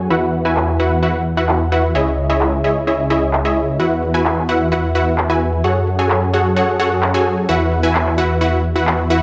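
Uplifting and anthemic, this short excerpt of festival progressive house drives forward at 130 BPM in a straight 4/4, rooted in E major. A punchy, airy supersaw stab carries the riff from the first moment, its detuned unison sawtooths and noise layer shaped by a low-pass filter and tape echo, sitting up front between E4 and G#5. Underneath, a thick, saturated detuned saw bass holds the low end between C#2 and F#2, its sine-reinforced body given a lush chorus sheen. The big-room dance drum kit enters at 0.1 seconds with handclaps and metallic hats, its layered electronic sound re-recorded in a small room, with low-pass filtering on the hats, snare and room. The harmony moves through Esus2, C#madd9, Esus2, F#madd9 and back to Esus2, all set in a moderate digital room reverb.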